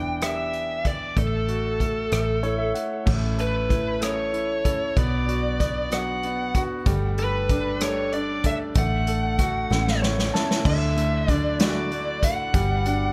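A six-eight pop ballad in D major, this romantic, swaying passage moves at 63 BPM in 6/8 and is cut from a longer piece. An up-front, bluesy overdriven lead guitar carries the melody with a dark, distorted tone touched by delay. Beneath it, a clear, natural grand piano plays accompaniment and adds short fills, while a vintage fingered electric bass sounds round and foam-muted. An unplugged drum kit played with bundle sticks brings a punchy kick, a medium-tuned snare and dark cymbals, and the drums add a fill from 9.7 to 10.7 seconds. A picked steel-string acoustic guitar enters at 3.1 seconds with full-bodied arpeggios sitting in the background. The chords move from Em7 through A, Bm and Gsus2 to settle on Dadd9 and Gmaj7, in a dry mix with little reverb.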